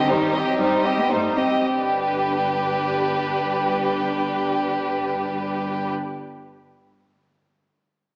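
Spirited and lively, this brief excerpt from a quick classical-period movement for symphony orchestra moves at 112 BPM in a straight 4/4, set in G major. A distant, expressive violin section carries the melody with vibrato, while a second violin section sits up front with a focused, bowed second line. Violas fill in the accompaniment with a smooth, even tone, and a rich cello section joins the double basses, whose sound has a smooth top, to anchor the bass. The opening 1.6 seconds slow down over a Cm/G chord before the music settles onto G for the remainder, with every section playing together throughout the 5.9 seconds. A wet scoring-stage reverb surrounds the ensemble, though the overall sound comes across as if heard through a small speaker.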